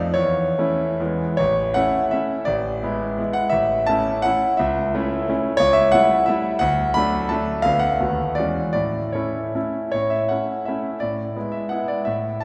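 Proud and graceful, this brief romantic classical cut from a longer piece is a triple-time dance in A major with dotted rhythms, flexible rubato and a tempo ranging from 135 to 196 BPM, played by a solo concert grand piano, clear and up front with deep bass and a smooth, vintage tone, spanning A1 to B5 and bathed in a lush concert hall reverb, its harmony moving through A, E7 and D before a rich E13 at 8.4 seconds resolves home to A.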